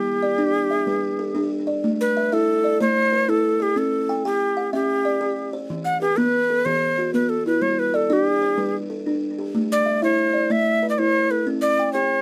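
Close, detailed microphones and a light reverb give this short excerpt a warm, rippling feel, drawn from a southern African traditional style built on an mbira-like interlocking cycle. It moves at 125 BPM counted in dotted quarters, in a straight 12/8, on an equiheptatonic scale centred on A with tuning at A4 = 442 Hz. A buzzing kalimba sits up front, playing arpeggios through the whole clip with soft fingertip plucks that sound woody, hollow and dark, each note short and smooth and trailed by tape echo. Alongside it, a Native American-style cedar flute, also up front, carries the melody, its airy wooden tone marked by a crisp chiff on each attack and vibrato. After an opening on G, the music turns at 1.8 seconds into a longer passage cycling through Am, C, Em, G and back to Am before settling on a bare C5 near 11.5 seconds.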